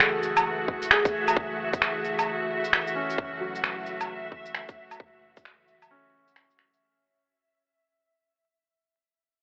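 Up-front, tape-warm electronic finger snaps, shaker and woodblock drive this melancholic, rainy future garage fragment at 132 BPM with a swung 16th feel in F# minor, over a soft felt-muted upright piano with pumping sidechain, low-pass filtering and analog delay, veiled con sordino strings sustaining an F#m7 chord, a deep round 808-style bass sitting in the background, a dreamy, detuned backwards swelling texture from 0.3 s, and a tight electronic kick from 0.7 to 5.4 s, all fading out under a huge ambient reverb, vinyl crackle and a telephone-like filter.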